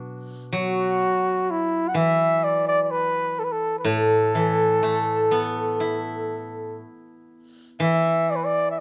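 This Chinese traditional piece for a small chamber ensemble has a festive yet pastoral mood, moving at 63 BPM in 4/4 with a free, rubato feel in the A zhi mode. A steel-string zither opens at 0.0 seconds as accompaniment, played with fingerpicks, its acoustic tone bright, ringing and silvery as it spans from A2 to F#4. At 0.6 seconds a dark trumpet enters with the melody, playing solo in a classical style between E4 and F#5, with light vibrato and a smooth top. The trumpet sits slightly louder than the zither, though both are placed up front. Close, detailed microphones and a light reverb give the recording an intimate clarity, and the clip is cut from a longer piece, ending at 8.8 seconds.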